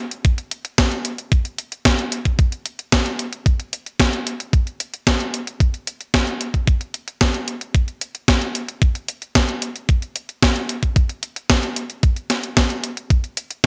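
Italo disco drums at 112 BPM in a straight 4/4 with a romantic, playful mood, this brief cut from a longer piece pairs a thumpy, overdriven electronic kick with a clean 12-bit drum machine playing hi-hat and a medium-tuned, gated-reverb snare, both up front in a bright 1980s-style digital production under a moderate plate reverb.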